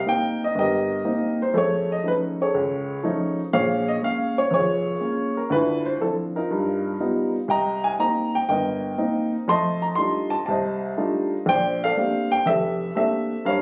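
A dark upright piano carries this short solo jazz passage alone, its woody, slightly detuned tone sitting up front with a mellow, vintage character. The mood is smoky and swinging, moving at 121 BPM in 4/4 with a firm swing on the eighth notes. The piano ranges from F1 up to C6, working through a progression that opens on Cm7, passes through altered dominants and a Dm9, and settles on Bbmaj13 near 11.5 seconds. It plays throughout the 13.6 seconds, a fragment cut from a longer piece. The sound suggests a phone capture in a club with moderate reverb, plus added studio reverb and compression around its smooth tone.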